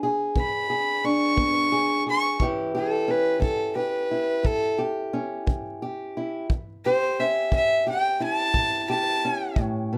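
A dark, woody fingerpicked acoustic guitar with old strings opens this soulful, rollicking acoustic country blues fragment in a straight 12/8, joined at 0.4 s by a tight kick drum played with brushes and a fiddle sitting up front. The fiddle carries the melody with an airy, nasal, reedy gut-string tone, moving into a solo at 2.4 s as the harmony shifts from E7 to A7. A moderate studio reverb gives the close trio a natural sense of room.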